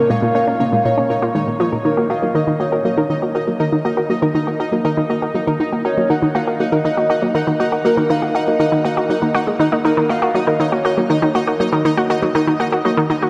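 A steady, straight 4/4 pulse at 120 BPM drives this mysterious, cosmic stretch of ambient, sequencer-driven space music in a vast, echoing cathedral reverb, where a nasal, up-front analog pluck riff with chorus and delay anchors the low end beneath mellow, detuned arpeggios from a soft round pluck, a pulsing, tempo-synced gated texture with its own built-in reverb, and a dark, full octave-layered lead melody with vibrato, phaser, chorus and delay that ends at 11.6 seconds, all moving from Bbm to Ebm at 1.9 seconds.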